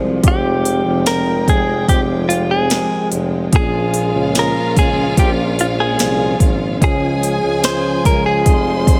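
A light reverb and digital ambience give this short cut from a pop ballad a soft, polished sheen, and its mood is longing and melancholic at a slow, straight pulse in four. A tine electric piano plays the accompaniment from the start, clean and set in the background as if through built-in speakers, while a very quiet, lush string section holds sustained chords with vibrato and portamento from a distance. Underneath, a punchy tuba carries the bass with scooped notes and a roomy, far-off tone. A smooth R&B drum kit sits up front with a soft electronic kick, a sharp snare and crisp hi-hats, and just after it a direct-recorded clean electric guitar takes the melody, picked and compressed, close and present. At 3.5 seconds a rich violin section enters with a bowed, expressive second line as the harmony moves from Fmadd9 through Bbm7 and Db before settling back on Fm.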